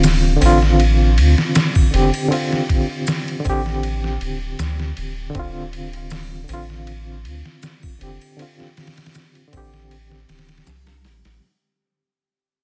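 A dry sound with little reverb frames this brooding, dark trip hop fragment in D minor, cut from a longer piece and fading out across its full 11.4 seconds. At 79 BPM in 4/4 with a light swing on the sixteenths, a sampler-style drum kit sits up front, its compressed, pitched-down character giving a gritty edge, a thumpy kick, a medium-tuned snare, hi-hat and ride cymbal, all with a tape-warm tint. Beneath it, a soft dub sub bass stays deep and round, its triangle and square wave tone sustained with a fast attack. A bright, reedy electric piano carries the accompaniment on a Dm7 chord, its clean, direct tone shimmering with fast tremolo and trailing tape echo. Maracas, triangle and a group handclap sit in the background with an acoustic, small-room quality, dropping out at 10.8 seconds.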